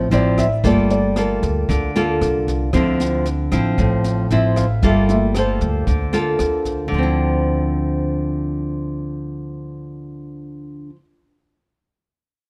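A dry sound with little reverb frames this intimate, smooth bossa nova fragment in D minor at 115 BPM, drifting between Dm9 and Gm9 chords. A warm baby grand piano takes a natural-toned solo over the opening until 6.9 seconds, supported by an upfront, fingerpicked classical nylon-string guitar, a woody pizzicato upright bass and a brushed jazz kit with a boomy kick, rim click and high-tuned snare, which drops out at 6.7 seconds. Guitar and bass carry on together to the close, with the guitar standing forward in the mix.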